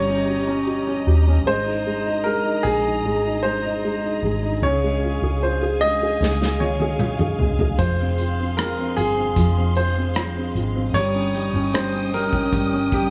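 Melancholic and heartbroken, this pop ballad excerpt opens with a clear, up-front concert grand piano carrying the melody over a felt-muted upright piano's soft, boxy accompaniment, lush bowed strings with expressive vibrato and portamento, and a round, foam-muted electric bass. An unplugged drum kit played with bundle sticks enters with a fill at 6.2 seconds, and a full-bodied picked steel-string acoustic guitar adds background arpeggios from 7.8 seconds. The whole sits in a small room with light reverb, and the action noise of both pianos stays audible.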